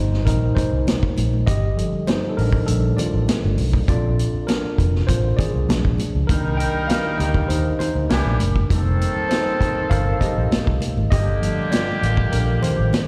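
The sound is that of a live gig heard through the venue's PA, with recital hall reverb and a small room ambience around this excerpt. It's lush 1970s-style soul, bittersweet and smooth, in a straight 4/4 feel, cut from a longer piece. A worn, slightly out-of-tune tine electric piano carries the solo from the start, lightly overdriven through its built-in speakers and moving through chords such as F9sus4, Ebmaj9#11/G and Bbmaj7. Up front beneath it, a dark, foam-muted fingered electric bass sits round and amped, while an acoustic vintage drum kit offers a punchy kick, medium-tuned snare and hi-hat with a rolled-off top. High-tuned congas played with soft hands ring in the background. At 6.3 s a clear, tight horn section enters with jazz-style stabs, distant and roomy, with light vibrato, a soft attack and a slapback echo.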